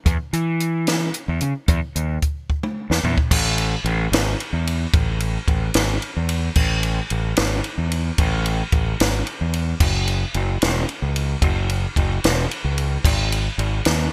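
A bright, dry 1980s-style digital production frames this intricate, bright cut from a longer math rock and midwest emo piece, moving at 74 BPM in a straight 6/8. A growling fingered electric bass, overdriven and amped, sits up front and spans E1 to E3. Beside it, a compact cocktail drum kit with dark cymbals, a high-tuned snare, a punchy kick and gated reverb covers hi-hat, ride, crash and toms, and a drum fill from 2.5 to 3.3 seconds leads into a new section that carries on until the end.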